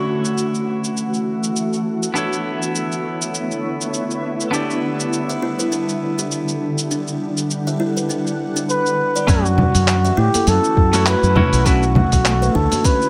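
A dusty, sampler-style soul kit sets a swung 16th-note feel at 101 BPM in 4/4, its cabasa, congas, handclaps and hi-hat sounding gritty, compressed and up front in this relaxed, warm sunset chillout piece in E dorian. A clean, picked semi-hollow electric guitar plays hollow-bodied accompaniment coloured by vintage 12-bit sampler grit and tape echo, while a shimmering ambient pad holds ethereal, slow-blooming chords with chorus and its own reverb through F#m7, Bm11 and Em7. At 4.5 s a buzzing kalimba adds bright, woody arpeggios with a thumbnail pluck and tape echo, and at 8.7 s a breathy, close-miked flugelhorn takes an intimate, jazz-style solo melody with vibrato and scooped notes. From 9.3 s a round, punchy fretless electric bass and a soft, overdriven electronic kick drum fill out the low end, joined by very quiet, ringing, high-tuned congas. A lush hall reverb surrounds the arrangement, and the recording is cut from a longer piece.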